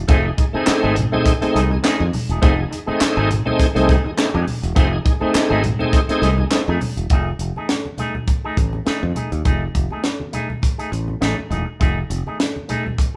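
Funk cut from a longer piece, moving at 102 BPM with a gritty, lightly swung sixteenth-note feel over an F7#9 chord, where a growly, punchy fingered electric bass and a tight kit of kick, high-tuned snare, hi-hat and handclaps sit up front beside a shouting, lightly overdriven tonewheel organ with chorus vibrato and slow rotary speaker that drops out at 6.7 s, while a twangy, scooped electric guitar through an envelope filter and thick-skinned congas in the background fill out a band playing live in one room with moderate large studio reverb.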